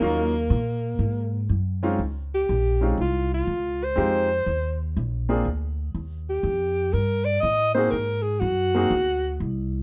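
A mellow alto saxophone carries the melody up front in this short jazz excerpt, its subtone voice shaped by vibrato, scooped notes and a smooth top. The mood is playful and relaxed, rooted in small-group swing and bop with a swung eighth-note feel in 4/4. A baby grand piano accompanies with a natural, short-sustained tone and drops out at 8.9 seconds. A pizzicato upright bass on steel strings gives a woody, thumpy, dark foundation that carries on to 9.8 seconds. The harmony moves through jazz chords such as Ebm7, Ab9 and Dbmaj7, turning to a new passage at 2.0 seconds. Light reverb frames the three players, who all sit close in the mix.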